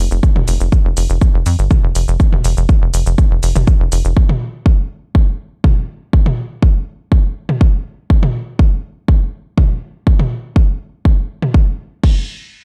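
A straight, steady pulse in 4/4 drives this short excerpt of melodic techno, which carries a cinematic, melancholic mood. A punchy, layered electronic kick sits up front from 0.2 seconds onward, touched with studio reverb. Beneath it, a house drum kit of crash cymbal, warm hi-hats, shaker and toms plays lower in the mix, with sidechain pumping on its toms, hats, percussion and cymbals and a bit of studio reverb of its own. A tight, driving sequencer bass, built from sawtooth and square waves with a filter pluck, a moving notch, a fast attack and decaying notes, moves between F1 and F2 with its own sidechain pumping, but it drops out after 4.1 seconds and leaves the drums to carry the rest. The production is dark and warm with little reverb overall, giving the track a close, focused sound.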